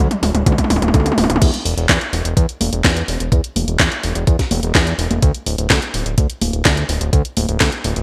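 A fat, nasal, detuned sawtooth bass sits up front from the very start as a layered house drum kit plays a fill of toms, crash cymbal, cracking snare, congas, handclaps and hi-hat through gated reverb, and a thumpy, sampler-style electronic kick enters at 0.5 s in this melodramatic, bittersweet 126 BPM italo disco passage, cut from a longer piece, with light reverb and bright 1980s-style digital production.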